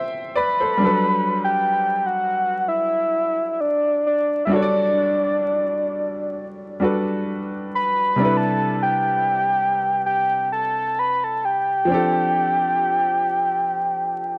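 A gently swung sixteenth-note feel in 4/4 carries this smooth, tender R&B excerpt, cut from a longer piece. A clear grand piano with a worn, natural character sits up front as accompaniment from the very start, moving through lush extended chords, opening on F69 before settling onto Gmaj7 at 0.8 seconds and later shifting to Cmaj13 at 8.2 seconds. At 0.4 seconds a soft, octave-layered synth lead takes the melody in a high register, its round, mellow tone blending triangle, sawtooth and sine colors over a sub octave. The lead's fast attack gives way to sustained notes touched with vibrato and a chorus effect that thickens its full sound. Light reverb and small room ambience frame the performance, while vinyl crackle lends a dusty, nostalgic patina.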